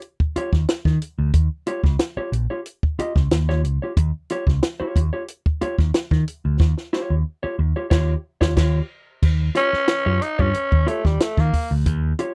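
A growling, raspy tenor saxophone enters at 9.6 s for a brief, breathy solo with vibrato in this gritty, playful funk excerpt, set over a compact cocktail drum kit with dark cymbals, a high-tuned snare and a tight kick, which plays a fill from 6.6 s, a picked electric bass sitting up front, and a dark, clean, compressed mellow electric guitar on an Eb9 chord, in a dry, close 1970s-style studio recording.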